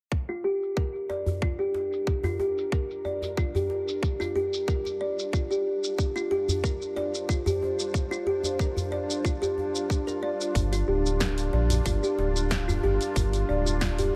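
An earthy, meditative organic downtempo piece in G minor pentatonic at 92 BPM opens at 0.1 s with an overdriven, up-front electronic kick and a layered deep house kit of hi-hat, shaker and punchy snare under low-pass filtering. Woody, hollow kalimba arpeggios with tape echo and soft-handed, cracking djembe with metal rattles join them, while a tense, string-like bowed drone holds sustained Gm7 chords with vibrato, reverb and sidechain pumping, its filter sweep running until 10.6 s. At that point a round, deep analog bass enters up front.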